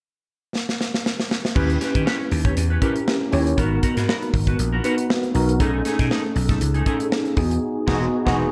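A growly, punchy slap bass drives this nocturnal, urban slice of polished 1980s jazz-funk pop at 119 BPM with a light 16th-note swing, entering at 1.6 seconds alongside a mellow tine electric piano bathed in ensemble chorus and a dark, fingered clean electric guitar riff with lush chorus, after a smooth, tight-kicked studio drum kit with gated reverb opens on a fill from 0.6 seconds, the band then moving through rich extended chords such as G#m9 and Emaj9 before a closing accent at 7.6 seconds.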